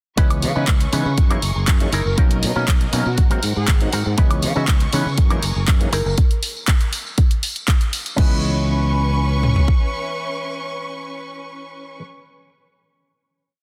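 The mix is dense and heavily limited, set in a digital ambience and pumping under sidechain compression, with a filter sweep running through the groove. This filtered disco house piece moves at 120 BPM in a straight 4/4, its C# dorian chords (C#m7, F#13, Bmaj9, G#9) carrying a nostalgic, groovy mood. A punchy four-on-the-floor kick with toms sits up front beside a growly, octave-jumping fingered electric bass with tube saturation. Programmed hats, claps, woodblock and crash fill out the kit, with a very quiet tambourine in a live room. An overdriven clav plays stringy dotted-rhythm chords through a phaser, and a clean, dark envelope-filtered guitar with tremolo adds a funk chord riff. A lush, distant violin section holds sustained pads. From 1.9 s, a fat, brassy analog synth line with chorus and delay sits in the background for short phrases, and at 8.2 s the groove gives way to a closing C#m7 chord held by the clav, guitar and strings.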